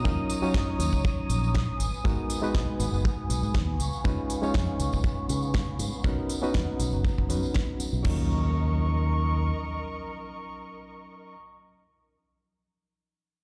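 The recording sounds as if it is played over a big sound system in a bare room, with a large studio reverb around it, while the kick and pop kit carry a small room ambience. This is a sensual, groovy nu-disco cut at 120 BPM in straight 4/4 and Eb minor, moving through Ebm7, Abm7, Db7 and Bmaj7 before returning to Ebm7. A barky, reedy electric piano heard through its built-in speakers plays the accompaniment with delay. Muted, con sordino violins hold veiled, dark sustained chords behind a low-pass filter, and both the violins and the punchy, bright fingered bass with its envelope filter carry a filter sweep and sidechain pumping, as does the piano. Up front sits a dry, tight acoustic kick, joined by a layered electronic kit with a fat snare, crisp hats and crash, plus a tambourine blended with tube shaker and group handclaps. At 8.0 s a background electronic impact arrives, the drums drop out soon after, and the bass stops at 9.5 s, leaving piano and strings alongside the fading impact to close this fragment of a longer piece.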